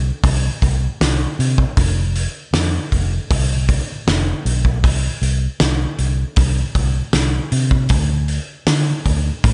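A dry recording with a dull top end opens this short cut from a longer rock piece steeped in shoegaze and dream pop, its mood wistful and dreamy. At a slow 78 BPM in a straight 4/4, a vintage electric bass sets down the low end from the first moment, its foam-muted, fingered tone dark, round and punchy through an amp, ranging from F1 to D3. A loose indie drum kit joins at 0.2 seconds, sitting up front with a fat snare, a punchy kick and hi-hat in a pumping studio room. Together the two parts carry the whole passage through to its end at 9.5 seconds, with the tuning set slightly below standard pitch at A4 = 438 Hz.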